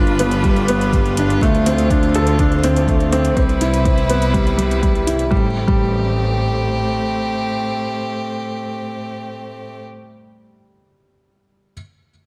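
Cinematic and intimate, this piano and strings electronica in A minor moves at 123 BPM in a straight 4/4, cut from a longer piece, with a soft, felt-muted upright piano riff carrying digital delay up front through the full 11.7 seconds, a rich, smooth string quartet holding sustained bowed chords, a bright, biting double bass section pumping under sidechain until 6.7 s, and a deep electronic kick and metallic hi-hat with studio reverb playing through the opening section, the hi-hat stopping at 5.3 s and the kick running on to 5.8 s, as the chords move from G7 through Dm7 and Cmaj7 to Am7 at 5.3 s in a light reverb.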